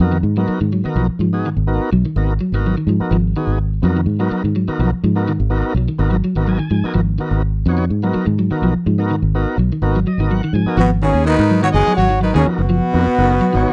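Hypnotic and driving, this afrobeat groove in straight four rides on a single minor-seventh chord throughout. A round, foam-muted electric bass sits up front with a dark, direct tone, while a clean electric guitar picks arpeggios in a narrow low-middle range. A thick tonewheel organ, lightly overdriven through a slow rotary speaker, fills out the accompaniment and drops in short fills around 6.2 seconds and again just before the horns arrive. At 10.8 seconds a clear trombone takes the melody with a light vibrato, joined by a bright trumpet and a raspy, growling baritone saxophone with scooped notes on supporting lines. The sound is dry and close, in the manner of a 1970s studio session, and the passage is cut from a longer piece.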